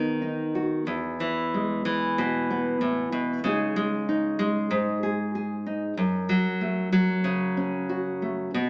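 Peaceful and hopeful, this short folk excerpt features a solo nylon-string guitar in a loose, rubato feel, its full-bodied, thumb-plucked tone sitting up front and ringing through a moderate recital hall reverb with a small speaker sound as the chords move from B through E, C#sus2 and F#m over its 8.7 seconds.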